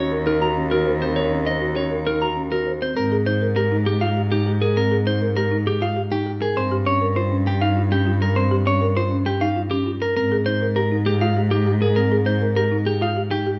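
A moderate large-studio reverb sets the listener further back in the room for this bright, hypnotic stretch of minimalist classical pattern music in three, cut from a longer piece. Up front, a clean, compressed electric guitar picks the melody, while a folk marimba played with soft mallets spins woody, round arpeggios over a rich, bowed cello bass with smooth vibrato, all three sounding through the whole passage. The harmony shifts from Ebm7 to Abmaj7sus2 at 3.0 seconds, moves through a rootless Eb9/G, and settles back on Abmaj7sus2.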